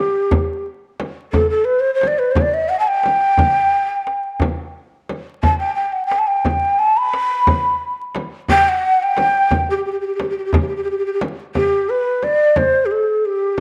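A breathy, hollow shakuhachi opens this festive Persian modal piece in a straight 6/8, its tongued, chiff-edged melody sitting up front with vibrato and rolled-off highs. At 0.3 seconds a deep, large frame drum played with soft hands and a close, dry tombak struck with hard hands join in, and the tombak drops out at 11.4 seconds, shortly before a brief new section begins at 11.6 seconds. Wet spring reverb, small-room ambience and a layer of vinyl crackle give the recording a warm, aged character.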